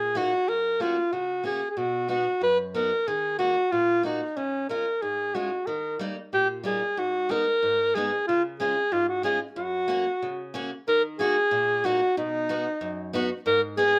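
A rough home demo with a wet small-room sound carries this jolly, festive alpine folk dance-band excerpt at 93 BPM in 2/4, tuned to A4 = 435 Hz, where an up-front, clear alto saxophone with vibrato and a smooth top plays the melody in a classical style over a quieter picked steel-string acoustic guitar with audible finger squeak, both in plate reverb, as the harmony moves from F# major into Eb minor at 10.9 s.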